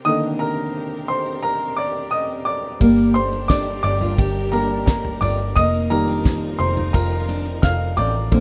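Anthemic and uplifting, this piano-driven pop piece opens with a present, polished baby grand carrying the lead over an intimate, smooth-topped bowed string section playing sul tasto with vibrato, and at 2.8 seconds a full-bodied steel-string acoustic guitar riff with audible finger squeak, a round, foam-muted electric bass and a dry 70s drum kit with a fat snare, tight kick and dark cymbals join in over a Cm7, Gm, F7sus4 progression, set in light reverb within a rough home-demo mix.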